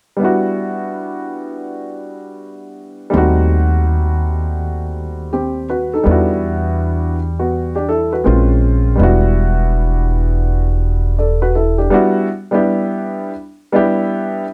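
A dark grand piano opens this excerpt at 0.2 s, playing mellow, worn chords close up front, with audible action noise and short sustain lending it an intimate character. The piece is a smoky, cool hip hop groove at 82 BPM in 4/4 with a swung sixteenth feel, set in E minor and circling around Em9, passing through a rootless B7b9b13 and a brief A#m9 along the way. An upright bass joins at 3.1 s, plucked pizzicato on steel strings with a woody, warm, acoustic tone, sitting up front in the low register. The bass stops at 11.9 s as the music moves into a new section, leaving the piano alone to carry the close. Light reverb and a dark, warm production give the recording a smoky, cool atmosphere.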